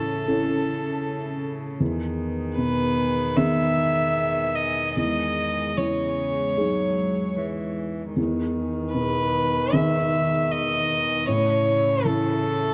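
Neoclassical piano and strings with a tender, hopeful mood and a rubato feel, led by a rich, floating violin melody touched with tape echo, over a warm, distant cello second line, a felt-muted upright piano's soft, boxy accompaniment and a shimmering, chorused pulse-width pad sustaining chords in the background, all in a close, detailed recording with light reverb.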